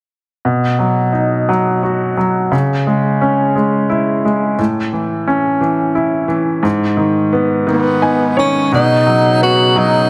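Heard through an echo-chamber reverb with small-room ambience, this aching, dramatic pop excerpt in 6/8 at 58 BPM opens on a bright, woody upright piano placed up front, its action noise audible as it moves through B, C#m, A and G#m before a fill at 7.7 s, where an intimate, breathy tenor saxophone with jazz-style vibrato enters on the melody, joined at 8.7 s by a reedy pedal harmonium holding sustained chords in the background over Badd9.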